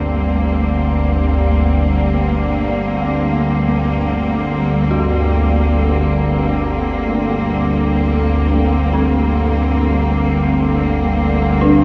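A calm, detuned organ-like drone sits up front in the low register, its slow attack and long release thickened by ensemble chorus and built-in reverb, in a cavernous, ominous dark ambient fragment in free time. A lush bowed cello section, smooth and even with vibrato, holds sustained chords beside it. In the background an eerie, inharmonic FM synth bell traces arpeggios with chorus, tremolo and tape echo, all of it bathed in a huge, wet studio reverb.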